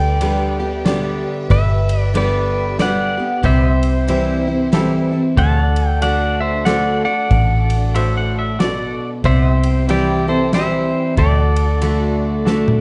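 A bright, twangy pedal steel guitar sings the melody from the outset over a full-bodied picked acoustic guitar, a round, punchy muted electric bass, soft bowed violins and a second, mellower pedal steel swelling chords in the background, setting a nostalgic, sunny honky-tonk waltz with a swung lilt. A brilliant grand piano and a dark, smooth drum kit with a fat snare join almost at once, and a clean electric guitar slips in a brief phrase through tape echo from 8.0 to 9.1 seconds. A light reverb colours the sound, and a drum fill at 12.5 seconds closes this cut from a longer piece.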